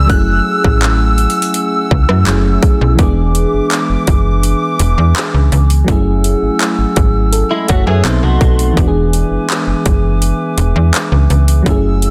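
A snappy, slap-like FM bass sits up front in this moody, sensual contemporary R&B piece, its fast, metallic attack decaying under a straight 4/4 groove at 83 BPM. A trap drum kit drives the track with a hard-clipped kick, metallic hi-hats, handclaps and rim clicks, all pushed through overdrive. A round, warbling FM electric piano with a vintage noise layer and chorus carries the accompaniment, while a close-miked woodwind section holds sustained chords with vibrato and a sidechain pumping effect. A soft, pure synth bell with chorus, phaser and delay sounds in the background only during the first 1.5 seconds, and a clean, direct-recorded electric guitar plays picked, compressed arpeggios with ensemble chorus and delay from 7.5 to 8.8 seconds. The harmony moves through F#m9, E7 and B7b9 in a dense, heavily limited modern mix with a digital ambience, and the recording is cut from a longer piece.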